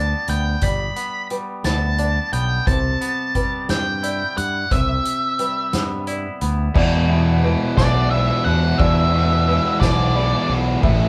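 Cathartic and cinematic, this post-rock passage, cut from a longer piece, moves in a straight 6/8 and sits in a wet room sound of a band playing live together. A dark, fuzzy lead guitar carries the melody up front, while a soft, muted upright piano arpeggiates in the background and a twangy, clean electric guitar picks its own arpeggios with a warbly pitch drift. Beneath them, a bright, growling fingered bass with overdrive sits up front, and a distant, roomy drum kit played with soft mallets adds a punchy kick, a medium-tuned snare, hi-hat, ride and crash with a rolled-off top. The harmony drifts from Gadd9 to Cmaj7 before settling on a stark E5 power chord. At 6.7 seconds a biting, overdriven guitar riff enters up front as the twangy guitar drops out at 6.8 seconds, and the fuzz lead falls silent at 10.5 seconds while the rest of the band carries on.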